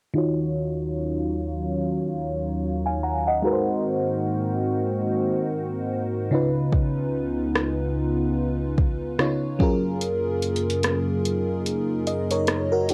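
Longing and sensual, this short cut from a longer contemporary R&B piece moves at an unhurried, gently swung pace in 4/4. An FM electric piano layered with a soft pad carries the accompaniment from the start, its lush, dreamy tone touched with chorus, while a hollow, flute-like pad holds sustained chords beneath it with a mellow, nasal colour and a pumping sidechain feel. A filter sweep runs across the whole passage as the harmony moves through Ebm7, Ab7, Db7 and Gbmaj7. At 6.7 seconds a smooth electronic drum kit enters up front, with a soft kick, hi-hat and rim click given an overdriven edge, and the kick drops out at 10.0 seconds. A moderate studio reverb and a cassette home-recording character, along with a tape stop, give the sound a worn, intimate grain.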